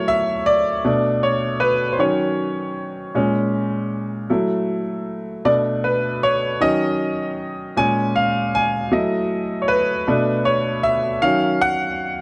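Sultry and late-night, this brief R&B excerpt sets a solo grand piano, clear yet worn in tone and placed up front, against a slow 52 BPM pulse in a straight 6/8. Across its 12.2 seconds the piano cycles through a dusky loop of minor seventh chords, Gbm7, Bm7, Ebm7 and Bbm7, ranging from Bb2 up to Ab5. A moderate plate reverb with a long tail gives the natural piano sound a soft halo, and the passage is cut from a longer piece.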